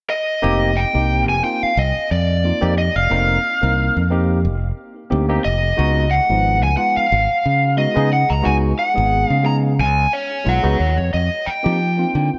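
A dark, overdriven guitar lead with delay opens this driving, nocturnal slice of electric jazz fusion at 0.1 s, soon joined by a barky tine electric piano steeped in lush chorus and a bright, up-front fingered electric bass, all moving at 90 BPM with a light sixteenth-note swing over F9sus4 before shifting to Db9sus4 at 5.8 s and returning to F9sus4 at 11.1 s, set in a moderate plate reverb with bright 1980s-style digital production.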